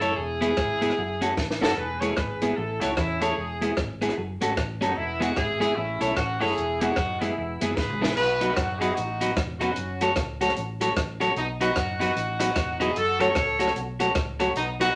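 A clear, tightly blended horn section rides up front with a smooth top and light vibrato, carrying the melody through this cheerful, bouncy ska passage with a swung eighth-note feel. Beneath it, an electric guitar at the edge of break-up plays compressed, picked accompaniment, while a mellow tonewheel organ adds round, key-clicking stabs through a slow rotary speaker in the background. A hollow-body short-scale bass supplies a dark, amped low end, and a compact cocktail kit with a punchy kick, high-tuned snare, rim clicks and dark cymbals drops in fills at 1.4 and 7.8 seconds, all set in a wet studio reverb as the harmony moves from E and A toward B and F#m after 8.2 seconds.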